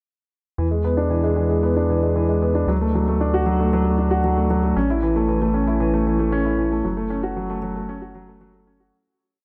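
A dark, mellow concert grand piano sits up front, repeating an arpeggiated six-step riff between E3 and F#4 that drifts against the 4/4 bar, its notes trailed by delay, while a round analog bass holds sustained, tube-saturated roots from F#1 to E2 with a filter sweep. This short, cinematic and moving piano-and-strings electronica piece in F# minor moves at a straight 115 BPM through E7, D, A and F#m, playing as a drop from 0.6 s before fading out from 6.2 s to 8.9 s. A huge ambient reverb gives the whole piece a cavernous, lingering space.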